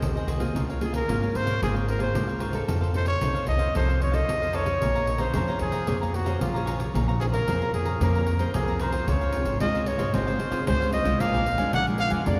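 A warm, jazz-inflected solo trumpet with light vibrato sings a nostalgic, bittersweet samba-choro melody, up front beside a woody, growly pizzicato upright bass. Crisp picked cavaquinho, fingerpicked classical nylon-string guitar and a jingly, hard-handed pandeiro fill out the accompaniment, and the harmony moves into a new major-key section at 9.1 s. The whole group rings in the long, wet reverb of a church or concert hall, in a short cut from a longer piece.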